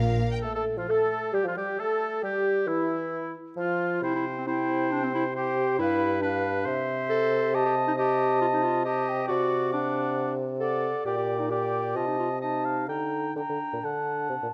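A quick classical-period movement for symphony orchestra, this short excerpt feels graceful and spirited, moving at 135 BPM in 4/4 with a flexible, rubato feel and settling into G minor from 7.5 s. A warm, close-miked clarinet opens alone at 0.0 s, and at 0.4 s the clear oboe with light vibrato and the airy concert flute, soft in attack and set distant with a straight tone, join it as a trio of second lines. Beneath them, a dark bassoon with light vibrato sits up front, carrying the accompaniment from G2 to A3. The harmony begins unaccompanied by chords, then moves through C, G7 and C before turning toward G minor shapes and closing on D at 13.8 s. All four parts play on until 14.5 s, heard through close, detailed microphones in a recital hall with moderate reverb.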